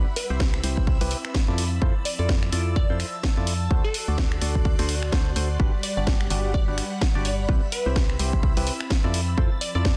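Joyful and uplifting, this piano house excerpt moves at 127 BPM in a swung 4/4, with a house kit of finger snaps, hi-hat and a cracking, softly clipped snare arriving at 0.2 seconds and a punchy, up-front electronic kick joining at 0.4 seconds, all tape-tinged and re-recorded in a small room. A dark, hollow FM bass with an organ-like character and a mellow percussive organ stab riff, treated with chorus, phaser and tape echo, both pump against the kick, while a glassy, crystalline wavetable pluck carries the melody through chorus and tape echo. In the background, a shimmering vintage string machine holds sustained chords and an airy, breathy, warbling pad adds a sustained texture, both pumping as well. The harmony moves through Cmaj7, Fmaj7, D7 and Gmaj7 under light reverb and a dense, heavily limited master.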